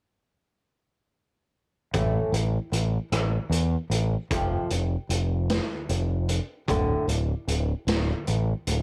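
A dry, cassette-recorded home take captures this cathartic, bittersweet excerpt of quiet-loud alternative rock in a slow 6/8 at 50 BPM, where a boxy, woody fingerpicked acoustic guitar with old strings plays dark arpeggios, a bright, growling overdriven bass sits up front, and a gritty, saturated garage drum kit with punchy kick, rim click, snare and hi-hat thumps through a small room, all three entering together at 1.9 seconds and moving through A5, F5 and D5 chords until 8.8 seconds.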